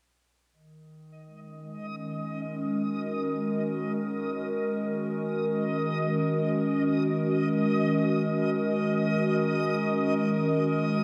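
A warbly, tape-like pad sits up front in this hazy, meditative ambient excerpt, holding sustained chords from 1.5 seconds onward with a nostalgic, lo-fi character and a mellow, detuned glow. Its slow attack and long release keep the harmony floating in free time, while chorus, phaser and its own reverb give it a wavering, smeared quality. Just after, at 1.7 seconds, a reversed, swelling texture enters higher up, a bright, granular shimmer that hangs on a single high note with a dreamy, detuned edge. The tuning sits slightly sharp of standard pitch. A lush hall reverb soaks the whole mix, lending a soft, suspended atmosphere, and the passage is cut from a longer piece.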